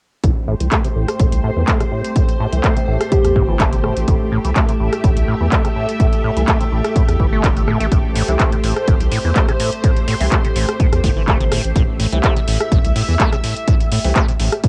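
Driving and gritty, this acid house excerpt moves at 125 BPM in A minor with a light 16th-note swing, anchored by a punchy, up-front electronic kick and a dry analog drum machine with handclaps, rim clicks and metallic hats, all sitting on an Am7 chord. A squelchy, resonant liquid acid bass riff runs a filter sweep from start to finish over a deep, saturated sine sub bass, while a lush vintage string machine holds sustained chords with ensemble chorus and sidechain pumping. A round, warbling FM lead sounds briefly on G4 at 3.1 seconds, and a dark, mellow baby grand piano adds background stabs from 8.3 seconds, the whole mix carrying the character of a home cassette recording with light reverb.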